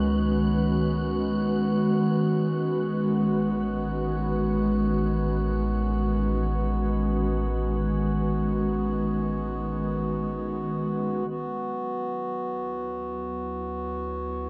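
This ambient passage, taken from a longer piece, opens with four layers sounding together: a glassy, ethereal FM pad holding sustained chords up front, a deep, ominous rumbling bass drone, a reedy pedal harmonium drone, and a faint, breathy wind-like noise texture. Floating in free time, the music feels warm and luminous, with the pad's ensemble chorus adding shimmer to its slow-attack, long-release chords. Beneath it, the detuned, wave-folded drone lends a dark, menacing weight, while the close-miked, dry harmonium breathes with a mellow, full tone. The airy noise layer sits in the background and fades out by 11.3 s, where the harmony moves from C#7sus4 and A6 to a settled Dmaj7 for the closing stretch. The whole recording is bathed in a wet concert-hall reverb and carries a dark, warm production.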